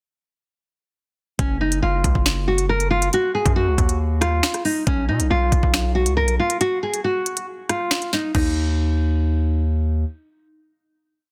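Drill hip hop at 138 BPM in a half-time feel, tense and menacing, built on a looping fingerpicked nylon-string guitar melody, classical in tone and filtered with tape echo, repeated like a sampled loop over Gb5, Ebm and B5 chords. A distorted, saturated 808-style bass carries long sub-bass notes with pitch slides that follow the knocking kick, while the electronic drill kit adds a sharp snare layered with finger snaps, crisp skipping hi-hats, rim clicks and crash cymbal. After a break from 6.6 seconds, the drums stop at 8.4 seconds while the guitar continues until 9.6 seconds and the heavy bass rings out until 10.0 seconds, all within digital ambience and a dense, heavily limited modern master.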